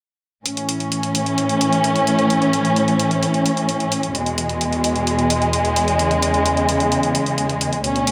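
Lush, up-front bowed strings with expressive vibrato and portamento sustain chords from A to E at 4.1 seconds over a quieter, layered electronic hi-hat in this uplifting, euphoric festival progressive house passage at 130 BPM in A major, all bathed in a digital studio room reverb and cut from a longer piece.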